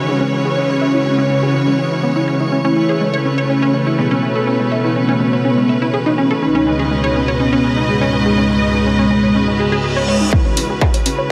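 A driving, cinematic melodic techno passage at 123 BPM in 4/4 in C# minor, cut from a longer piece. The overdriven, distorted kick only arrives at 10.3 seconds, joined by filtered hi-hats just after. Throughout, a lush detuned sawtooth pad holds sustained chords with chorus and sidechain pumping, moving from C#m through A/C# and G#m/C# before returning to C#m. A punchy, wave-folded pluck spins arpeggios through delay while a filter sweep runs across it, and a close, biting string ensemble adds a bowed, vibrato texture that also breathes with the sidechain. Over the top, a thick, dark unison lead with a sub octave and vibrato carries the melody through digital delay. A reverse cymbal rises from 9.5 seconds into the drums' entry at 10.3 seconds, and a huge ambient reverb wraps the whole passage in a vast atmosphere.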